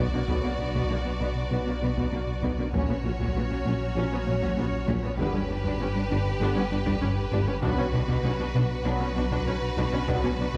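Brooding and futuristic, this short excerpt from a hybrid orchestral and electronic film score moves at 98 BPM in a straight 4/4, set in B harmonic minor and turning through Bm, F#/A#, G and back to Bm. A lush, bowed violin section carries the melody with smooth vibrato, while a second, more distant violin section adds an intense counterline, and a rich viola section sits in the background with light vibrato. Beneath them a glassy, ethereal FM pad holds sustained chords through ensemble chorus and its own built-in reverb, and a tight sequenced synth with a sawtooth, detuned filter-pluck tone drives quiet arpeggios. The low end is deep and layered, with a round analog bass riff in the background joined by a dark cello section, a mellow close-miked tuba, a very quiet double bass section and a sine-based sub bass. From 0.3 seconds a vintage-toned trombone section and a soft-attack, roomy French horn section add sustained chords, while a distant taiko ensemble struck with hard sticks plays quietly in a large room. 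A moderate scoring stage reverb with a 1.6-second decay binds the orchestra and synths into one space.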